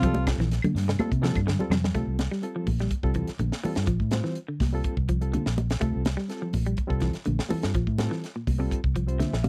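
Afrobeat with a hypnotic, driving groove, heard in a short cut from a longer piece: a round, dark fingered bass sits up front with a tight funk drum kit whose high-tuned snare and tight kick land in a dry, close 1970s-style studio sound. A clean, picked electric guitar plays arpeggios while thick-skinned congas and woody claves, the latter only from 0.3 to 1.8 seconds, stay in the background. A reedy, barky electric piano with light overdrive and medium tremolo comps over a shift from Csus4 to C7sus4 at 2.0 seconds, following a drum fill, and closes with its own fill at 9.0 seconds.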